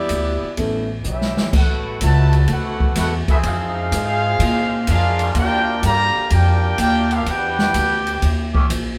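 A warm saxophone section opens this joyful, swinging big band excerpt over a woody, thumpy upright bass and an open jazz drum kit with dark cymbals and a boomy kick, then yields to a brief touch of intimate grand piano with audible action noise. As a drum fill begins at 1.1 seconds, a smooth-topped trumpet section takes the melody while a nasal, straight-muted trombone section carries a second line, and from 3.3 seconds a second muted trombone section, brilliant with light vibrato, adds sustained chords. The band plays live together in one room, surrounded by a wet studio reverb.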